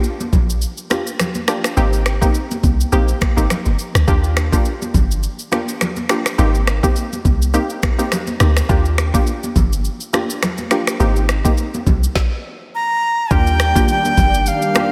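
Afrobeats with a breezy, joyful lift, set in a dreamy mix soaked in hall reverb, where an electronic drum kit with a knocking kick and woody snare, ringing high-tuned congas and a deep, round log drum bass carry the groove beneath a glassy, chorused wavetable pluck trading Ebmaj7 and Abmaj9 chords. The band drops into a stop at 12.2 seconds, and a breathy, bright jazz flute with vibrato and a crisp chiff enters up front at 12.7 seconds, trailed by a diffuse ambient delay. At 13.3 seconds a lush, warbling unison pad swells in on a returning Ebmaj7 as this short cut from a longer piece closes.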